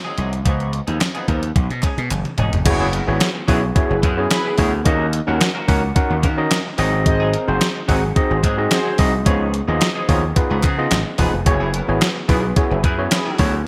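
Early-eighties boogie funk at 109 BPM, danceable and feel-good, this excerpt opens with a clean, twangy electric guitar riff washed in lush chorus, joined at 0.2 seconds by a punchy, overdriven slap bass and a crisp 8-bit drum machine with a thumpy kick, fat snare and gated reverb, while a very quiet, hollow group handclap enters at 1.0 seconds. After a drum fill, a barky, overdriven tine electric piano and a mellow, detuned synth brass line with chorus and vibrato arrive at 2.7 seconds, the brass sitting dark in the background as the harmony moves through chords such as C#9, D#m7, G#7 and F#9sus4. The bright digital production places drums, bass and electric piano up front in a moderate plate reverb.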